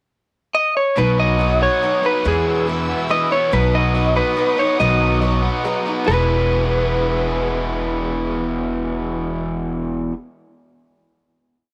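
Folk rock and heartland rock in a brisk 3/4 at 141 BPM in E major, jangly and nostalgic, where a slightly broken-up lead guitar enters at 0.5 seconds with hook phrases over a bright, overdriven, double-tracked garage guitar picking arpeggios, a woody pizzicato upright bass on root and fifth, boxy folk strumming from a steel-string acoustic in the background, a veiled con sordino string pad, and a dark, mellow concert grand joining at 3.5 seconds with close-voiced quarter-note chords, all in light studio reverb before settling on a final E chord at 6.1 seconds.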